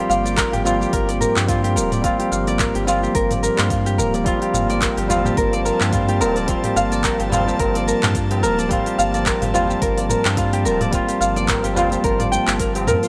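A bell-like electric piano with digital delay, a breathy, chorused pad and a fingerpicked flamenco guitar playing arpeggios with finger squeak and its own delay open this meditative organic downtempo excerpt at 108 BPM in G minor, resting on a single Gm7 chord with a 16th-note swing. The piano and pad pump against the sidechain, while a round sine sub bass with tube saturation, a deep electronic kick, and an afro-pop kit of crisp hats, handclaps, shaker and toms settle in beneath them. At 4.7 seconds a low-tuned tabla joins, very quiet and distant as if in a large room, all within a light digital reverb.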